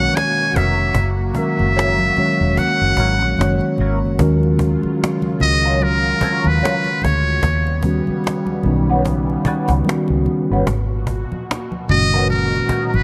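A buzzy, breathy metal-muted trumpet with delay carries the melody from the start over mellow tine electric piano, a lush detuned pad with chorus and phaser, and a round, punchy foam-muted electric bass, with very quiet bright congas and a woody, close cajon joining almost at once and a slightly broken-up electric guitar with wah and tremolo adding a second line from 0.6 seconds, in a late-night, sultry neo-soul R&B excerpt at 74 BPM in Eb minor with swung sixteenths, moderate plate reverb and a bright 1980s-style digital sheen marked by lossy compression artefacts.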